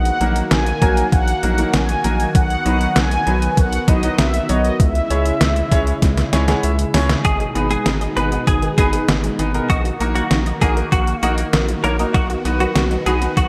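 A mellow, detuned synth brass melody opens this nocturnal, melancholic synth-pop fragment in G# minor at 98 BPM over a swirling phased analog pad and a round, deep analog bass, joined at once by a thumpy, overdriven 8-bit drum machine with a fat snare and gated reverb and a clear baby grand piano, and after a drum and piano fill from 6.0 seconds the brass gives way at 7.2 seconds to a twangy, direct-recorded clean electric guitar line and lush, punchy unison pluck arpeggios, all set in a lush hall with bright 1980s-style digital production.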